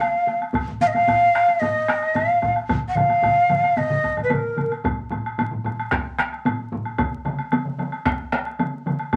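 Powerful and ceremonial, this excerpt of Japanese traditional taiko drum ensemble music moves at a straight 112 BPM in 4/4. A breathy bamboo shakuhachi with vibrato and a soft attack carries the melody up front until 4.7 s. Beneath and beyond it, layered taiko ensembles struck with hard sticks, two of them compressed and saturated, drive the piece alongside close, dry solo taiko drums on heavy sticks and a woody woodblock, all set in a small, wet room reverb with vinyl crackle.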